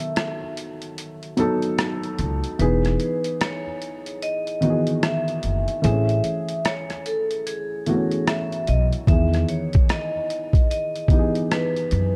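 A mellow, dreamy lo-fi hip hop excerpt opens with a metallic, ringing vibraphone melody, its slow motor vibrato softened by a low-pass filter, over a worn, slightly detuned upright piano with audible action noise and cassette-tape grit, while a gritty, pitched-down, compressed boom bap drum kit of hi-hat, rim click and thumpy kick swings through B7, Emaj7 and Amaj7, and a woody pizzicato upright bass on gut strings enters up front at 2.2 seconds, all set in light reverb with a dark production.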